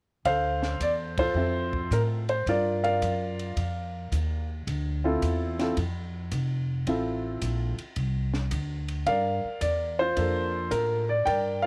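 Cool and smoky, this short cut from a longer jazz piano trio piece swings at 109 BPM in D minor, moving between Dm7 and Gm7. A woody, natural upright piano carries the melody up front over a warm, woody plucked upright bass strung with steel. A compact cocktail drum kit plays softer behind them, with dark cymbals, a high-tuned snare and a punchy kick, its small-room sound smooth and warm. The trio lands a band accent at 1.1 seconds, and light reverb softens the whole.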